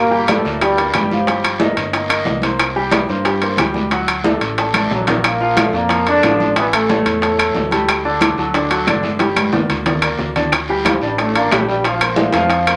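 This salsa excerpt at 182 BPM in 4/4 feels danceable and fiery, opening on G minor and moving through chords such as Eb add9 over G, D, Bb and A before closing on Dsus4 and Bbsus2. A bright trombone section plays the melody up front with light vibrato and a pop style, first appearing at 0.0 seconds and returning at 4.9 and 10.9 seconds. Beneath it, a clear concert grand piano plays accompaniment with a present, deep-bassed tone and long sustain, while a dark, punchy fingered electric bass holds the low end throughout. The percussion is dense: ringing high-tuned congas with a vintage, band-limited color, ringing metal-shell timbales heard close and dry, round low-tuned bongos struck with hard hands at a very quiet level, woody claves set back in a live room, and a raspy guiro in the background. Drum fills arrive at 4.7 and 9.2 seconds, and a club reverb gives the ensemble a wet space before a brief new section begins at 10.5 seconds.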